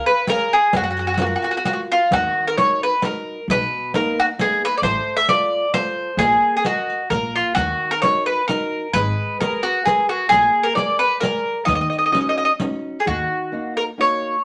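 An Italian folk serenade in 3/4, sunny and romantic, cut from a longer piece, with an up-front mandolin carrying the melody in a round, picked, double-strung tone while a dark, fingerpicked flamenco guitar accompanies beneath it. A softly handled riq adds close, shadowy jingles from 0.3 seconds, and a woody, thumpy pizzicato upright bass enters at 0.7 seconds, both stopping before the mandolin and guitar finish at 14.4 seconds. A wet studio reverb gives the ensemble a sense of space.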